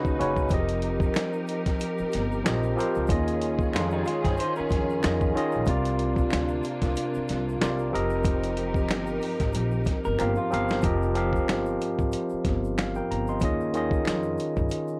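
R&B and neo-soul in F minor at 93 BPM, this smooth, soulful passage cut from a longer piece rides a gently swung 4/4 groove built on suspended ninth chords. A barky tine electric piano, lightly overdriven through a combo amp and sitting up front, carries the accompaniment for the full 15 seconds. Beneath it, a pizzicato upright bass gives a woody foundation, while a dusty, sampler-style drum kit, compressed and gritty with a thumpy kick, medium-tuned snare and finger snaps on top of hi-hat, anchors the beat and plays a fill from 10.2 to 10.8 seconds. A dark, slightly broken-up electric guitar through a small old amp adds a lo-fi second line, dropping out at 5.5 seconds and returning briefly around the fill, as a muted, con sordino string section holds veiled, lush sustained chords until 10.8 seconds. A very quiet, band-limited egg shaker and group handclap fill out the percussion, and light reverb gives the whole blend a soft sense of space as the music moves into its second section.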